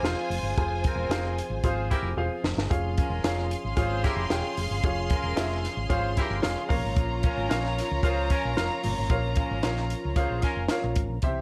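A compact cocktail drum kit with a punchy kick and high-tuned snare opens this passionate, urgent uptempo 1960s-style soul at 113 BPM, alongside a round, amped hollow-body bass up front, an intimate baby grand piano with audible action noise, a lightly overdriven tonewheel organ with chorus vibrato and slow rotary speaker in the background, and a smooth, bowed violin section carrying a second line through tape echo. A distant, roomy horn section with gentle vibrato adds its own second line from 0.8 s. A drum fill at 2.2 s leads the harmony from F minor to D-flat, then B-flat minor at 6.7 s, all in a modest reverb.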